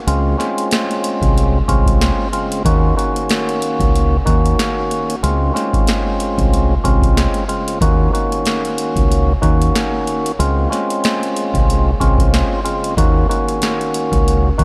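A dreamy haze of reverb soaks this moody, gritty boom-bap hip-hop clip, lifted from a longer piece and moving at 93 BPM in 4/4 with a light swing on the sixteenths. An up-front analog drum machine drives it, with a deep kick, a crisp snare and metallic hi-hats that were re-recorded in a large room to give them a booming weight. Beneath them, a dark, round fingered electric bass in a dub style holds down the low end. A fat, lightly overdriven tonewheel organ sits close in the mix, its percussive second-harmonic attack filtered and coloured by cassette tape. The harmony, in Eb dorian, sways between Dbmaj7 and Ebm7, with all three parts playing together from 0.1 to 14.6 seconds.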